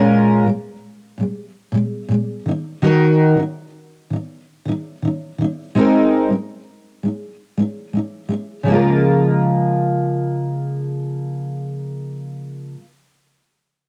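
Easy-going and heartfelt, this short pop excerpt moves at an unhurried 82 BPM in 4/4 with a straight feel, set in Db major and tuned to A4 = 442 Hz. A single fingerpicked steel-string acoustic guitar carries the whole accompaniment from 0.0 to 12.9 seconds, sitting up front with a warm, auditorium-sized body. The guitar is double-tracked and carries the soft coloring of cassette tape, in keeping with its home recording on cassette. Its chords drift from Bbm7 through Ebm and Abadd9 before settling onto Db6 at 8.7 seconds, where a brief new section begins. A moderate booth ambience keeps the sound close and intimate, as if the listener were sitting beside the player.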